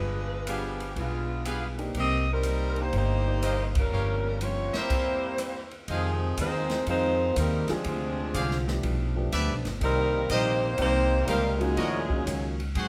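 Heard in a moderate large-studio reverb, this excerpt of sultry, dramatic big band swing moves at 122 BPM in C minor, shifting to F minor at 5.9 s. An up-front saxophone section carries the vibrato-laden melody over woody, growly pizzicato upright bass, while a bright trumpet section adds stabs, a loose trombone section sits behind with a second line, and a swinging drum kit with a punchy kick drives the band to an accent at 3.7 s. A picked steel-string acoustic guitar with finger squeak stays in the background, and a natural-sounding baby grand piano comps in two stretches, returning at 7.7 s.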